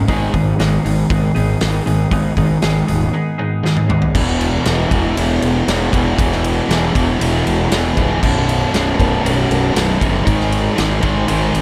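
Light reverb and a big, natural room sound frame this anthemic, bittersweet slice of quiet-loud alternative rock, cut from a longer piece. A clean, twangy twelve-string electric guitar picks compressed arpeggios at the start, sitting behind a double-tracked, overdriven stack guitar riff that stays up front throughout. Underneath, a fingered electric bass adds a dark, round fuzz tone, and an acoustic kit with a tight kick, medium-tuned snare, toms, hi-hat, ride and crash cymbals drives a straight four-beat feel. The twelve-string drops out at 4.1 seconds, and a drum fill from 3.6 seconds carries the band into the second section at 4.2 seconds. There the harmony moves through power chords while the distorted guitar, bass and drums push on to the end.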